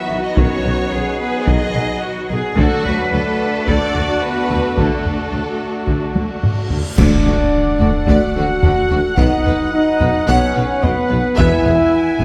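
Opening on lush, vibrato-rich violin sections carrying the melody and a second line over smooth violas, soft-attack woodwind and mellow French horn chords, with distant cellos, a mellow tuba and a very quiet double bass section anchoring the bass, this epic, dramatic orchestral film cue at 109 BPM gains hard-stick taiko drums at 0.4 seconds, dark cymbals and concert bass drum, a drum fill and a huge, bright reverse cymbal rushing into a band accent and impact at 7.0 seconds, where a dark, distant trumpet section begins tight stabs, all within a moderate scoring-stage reverb.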